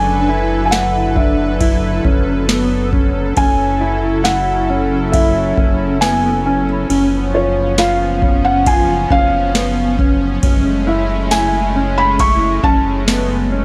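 A dry, gritty recording with light reverb frames this haunting, hazy dream pop excerpt in F# minor, moving at a slow 68 BPM in a straight 4/4 over chords that all rest on an F# bass. A felt-muted upright piano carries the melody with audible action noise, its intimate tone smeared by tape echo and shimmer reverb, while a lush, detuned unison pad holds bright sustained chords and a mellow, clean electric guitar plays fingered arpeggios through ensemble chorus and tape echo. A glossy, pulse-width-modulated synth bass sits on a single low F#, a booming analog drum machine with a deep kick, crisp snare, ride and tambourine enters up front and overdriven at 0.7 s, and a very quiet, bell-like celesta adds delicate sparkle until 9.5 s.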